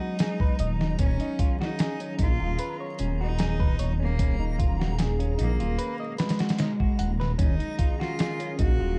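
A straight 4/4 trip hop groove from a gritty, compressed sampler-style kit with a thumpy kick drives this brooding piece, where a rumbling detuned saw bass sits up front beneath a biting cello melody with vibrato and tape echo, clean fingered arpeggios on a semi-hollow electric guitar, a warbling lo-fi pad of sustained chords in the background and a faint reversed, granular swelling texture, all over a dark haze of vinyl crackle.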